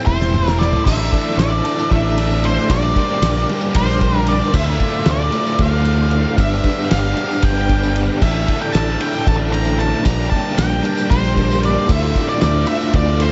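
A cut from a longer dark, hypnotic psychedelic rock piece opens on an Am7 chord from the fuzzed lead guitar, reedy combo organ and biting overdriven guitar, as a cloth-damped, thuddy drum kit with a fat snare plays a fill from 0.1 seconds before the groove settles at 229 BPM in 7/8. The double-tracked overdriven guitar riff, put through rotary speaker and tape echo, sits up front with the round, direct fingered bass. Above them the octave-fuzz lead carries a tape-echoed melody, while the heavily vibratoed organ holds very quiet chords and a close, jingly tambourine adds faint shimmer, all in an echo-heavy, small-room mix with a rolled-off top.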